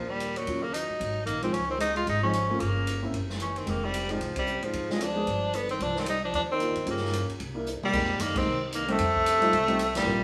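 Late-night and moody, this brisk small-group swing and bop passage at 225 BPM has a bright, punchy tenor saxophone up front carrying the melody with vibrato and scooped notes, while a dark, breathy trombone sits in the background on a second line. A woody pizzicato upright bass and an intimate grand piano, with its action noise audible, move through minor-ninth and half-diminished harmony, supported by a distant, roomy drum kit with dark cymbals and a boomy kick. The band plays live in a small stone room with a wet reverb, hitting accents at 4.3 seconds and 8.3 seconds around a drum fill at 7.7 seconds that leads into a new section.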